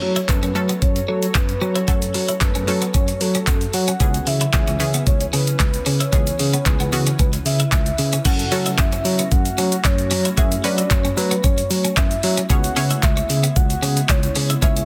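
An up-front, produced R&B drum kit leads this driving, bittersweet dance-pop excerpt, its knocking kick, metallic hats, handclaps, shaker and crash arriving at 0.2 s with a small-room character and a softly clipped snare. Beneath it, a tine electric piano carries the bass line through a combo amp, colored by medium tremolo and sidechain pumping. A round, dark octave-layered synth lead sings the melody with vibrato, chorus, tremolo and dub echo, while a bright, detuned analog pluck fills in accompaniment that pumps against the kick. Further back, a glassy, warbling FM pad holds ethereal chords, and a clean, compressed twelve-string electric guitar picks a riff through lush chorus, with a grainy egg shaker barely audible close by. The harmony moves between F#m and C#m7, a second section begins at 8.3 s, and the dry, dense, heavily limited mix keeps the sound tight and close.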